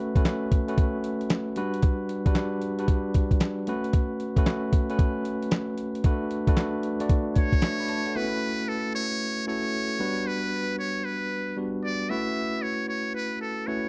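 A bell-like tine electric piano opens this upbeat, flirty R&B excerpt in a new jack swing style, laying bright, clean chords up front in A mixolydian that move between A69, Gmaj7 and Bm7. A moment later a dusty, sampler-style soul drum kit joins at 114 BPM in 4/4, its gritty, compressed sound built on a thumpy kick, a fat snare, hi-hat and handclaps, with a swung 16th-note feel and the character of a kit re-recorded in a large room. At 7.4 seconds a trumpet with a metal mute takes the solo melody, its buzzy, breathy tone soft in attack and intimate, carrying a light vibrato and a slapback echo. The drums stop at 8.1 seconds, leaving the trumpet and electric piano to carry the second section over A69 and Gmaj7. The overall sound is dry and close, in the manner of a 1970s studio recording.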